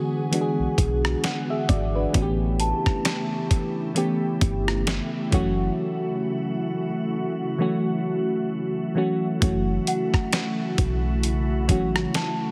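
A mellow FM electric piano sits up front, its round, warbling tone softened by chorus as it carries the accompaniment through this slow, moody contemporary R&B excerpt at 66 BPM with a lazy 16th-note swing. Beneath it, a glassy FM pad holds ethereal sustained chords with ensemble chorus, its own reverb and a sidechain pumping effect, moving from E7 to A7 and then F#m7. A dusty soul sampler-style drum kit brings a thumpy kick, fat snare, rim click and hi-hat with gritty, compressed punch, while a woody FM bass enters at 0.6 seconds with a dark, round low end. A delicate, bell-like celesta adds sweet touches through delay, appearing briefly near 2.6 seconds and returning at 9.9 seconds. The whole mix has a heavily compressed radio sound with light reverb, giving it a late-night character.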